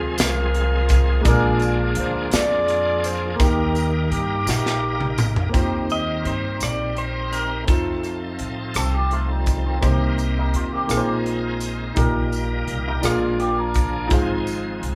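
This is a slow, hopeful gospel piece in 6/8 at 56 BPM in E-flat major, cut from a longer performance. It opens with a mellow, distant horn section singing the melody over a warm, intimate grand piano whose action noise is faintly audible. A shouting tonewheel organ holds chords through a slow rotary speaker and chorus vibrato, while a woody pizzicato upright bass anchors the low end. A polished studio drum kit with a punchy kick and a jingly tambourine in the background join almost at once. A drum fill leads into the second section at 5.5 seconds. At 5.9 seconds a dark, clean lap steel takes over the melody with fingered slide, and at 8.8 seconds a twangy, scooped electric guitar with an envelope filter adds a second line. The harmony moves through rich chords such as Eb6, F7, Cm7 and Bb9sus4, and the whole band sounds as if it is playing together live in a small room with a moderate ambience.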